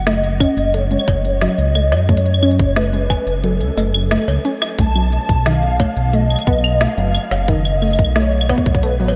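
IDM at 89 BPM in F# melodic minor, this cerebral, eerie fragment of a longer piece moves from F#m to B7 at 4.8 seconds, its dreamy mix soaked in a huge ambient reverb. A dark, rumbling detuned saw bass sits up front beside a tight electronic kick that enters at 0.4 seconds, while a lo-fi, dusty pluck with chorus and delay spins arpeggios and an organic electronic kit adds woody snare, crisp hats, claves and cowbell. Over them a nostalgic, warbling lead with soft attack, vibrato and portamento carries the melody through ensemble chorus and delay.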